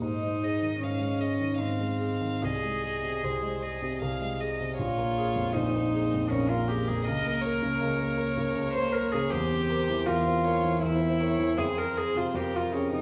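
Bathed in a recital hall's reverb, this tender excerpt from a slow romantic piano trio movement unfolds in Ab major at 78 BPM in 3/4, with a flexible rubato feel. An intimate, close violin carries the melody with light vibrato, a soft attack and an airy sul tasto bow, sitting a little lower in the balance than the pure, floating cello, which plays a second line, also sul tasto. Up front, a natural-sounding grand piano lays down a warm accompaniment beneath a gentle progression that moves from Ab through Bbm7 and C7/E before coming to rest on Fm.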